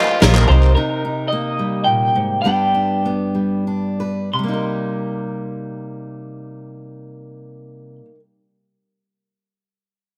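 Lightly reverberant and cut from a longer piece, this wistful, stirring indie folk piece in 3/4 opens with a brief flurry of nasal stopped French horn and plunky banjo arpeggios, both touched with analog delay, alongside a boxy twelve-string acoustic guitar, distant group handclaps and a round, up-front hollow-body bass, before a fingerpicked steel-string acoustic guitar takes over the accompaniment at 0.8 s as the music slows down, while a twangy, slightly broken-up electric guitar with tremolo carries the melody throughout.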